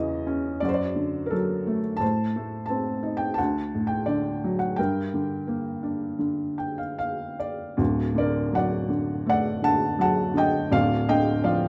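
A felt-muted upright piano carries this brief solo classical excerpt, its soft, boxy tone sitting up front with the mechanical noise of the action clearly audible. The mood is moody and brooding, and the playing is lyrical and rubato in four, ranging from the deep bass up into the upper register with a short, intimate sustain. The harmony drifts through shaded chords such as a diminished chord and G minor before settling on D, and the closing voicing is rootless. A piano fill from 6.2 to 7.8 seconds leads into a second section that begins at 7.8 seconds. Light reverb and a dark production surround the instrument, and the recording is cut from a longer piece.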